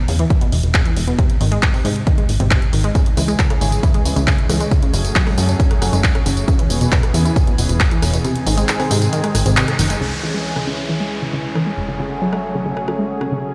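Heard through a big sound system in a bare stone room, this bittersweet, driving uplifting trance excerpt sets a round, detuned analog pluck arpeggio with chorus, delay and sidechain pumping over a funky, wave-folded plucky bass and an overdriven analog drum machine of handclaps, hi-hat, rim click and tambourine. An up-front layered kick punches until it drops out at 8.2 seconds, and a thick, warbling unison pad swells in with slow-attack chords from 3.0 seconds. From 10.0 seconds a filter sweep moves over the arpeggio as an electronic downlifter enters.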